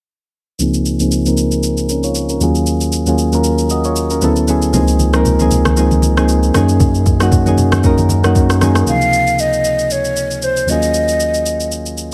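Relaxed and warm, this amapiano cut from a longer piece moves at 116 BPM in Db major with a lightly swung 16th feel, opening on round, mellow electric-piano-like synth keys with chorus and a filter sweep over lush chords such as Dbmaj13, Ebm11 and Gb69, supported by a soft, tape-warm electronic drum kit of kick drum, rim click and shaker. At 4.7 seconds a deep, saturated sine sub bass arrives alongside low-tuned, soft-handed congas tucked in the background. From 8.9 seconds a breathy, hollow, close-miked concert flute with delay carries an up-front melody through a digital ambience.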